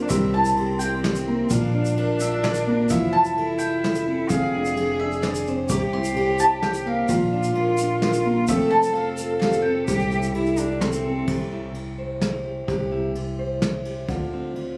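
A bowl-back mandolin carries the melody in this nostalgic, gentle acoustic folk excerpt, its picked double strings ringing high above a small band at 129 BPM in a straight 3/4 lilt, in C mixolydian. Beneath it, a bowed cello sits up front as a second line, nasal and boxy with smooth vibrato, while a felt-muted upright piano spins mellow, intimate arpeggios with audible action noise. A fingerpicked steel-string acoustic guitar gives warm accompaniment, the upright bass plays woody, dark pizzicato, and a soft brush kit adds bright cymbals and a punchy kick, with a grainy, saturated tube shaker on top. The chords move through C7, Bb, Fmaj7 and Fm6 before settling toward C6. The mandolin drops out at 10.8 seconds and the cello and piano stop at 11.3 seconds, leaving guitar, bass and brushes to carry a brief closing passage that reaches Dm7. Light club reverb and a phone-in-the-room recording give the sound a close, informal feel.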